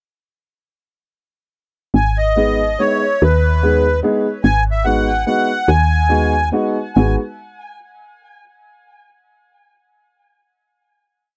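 A round, woody FM bass opens this short, bittersweet musette waltz at 1.9 s, setting down root and fifth on the main beats with a fast, decaying attack. A reedy, sweet accordion with light tremolo tuning and tape echo joins at 2.0 s, spinning motif-based phrases over a minor chord that darkens into a minor seventh, and a clear upright piano enters at 2.4 s with closely voiced, long-sustaining backbeat chords. The rubato feel keeps the whirling dance loose until a final chord arrives at 7.0 s, all captured in a dry, close 1970s-style studio sound.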